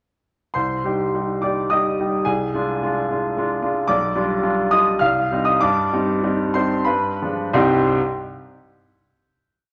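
A clear, woody upright piano opens at 0.5 seconds with a brooding, bittersweet romantic character piece in C minor and 3/4, its tune doubled in octaves over repeated chords, played up front with a natural tone and a free rubato feel between 82 and 113 BPM, tuned to A4 = 437 Hz. The harmony moves from C minor through a half-diminished chord over C and a dominant seventh toward a flat-nine dominant, while the pace slows from 3.1 seconds. A final C minor chord arrives at 7.5 seconds, and after the piano stops at 8.0 seconds it lingers in the wet wash of a large studio reverb to close the short whole piece.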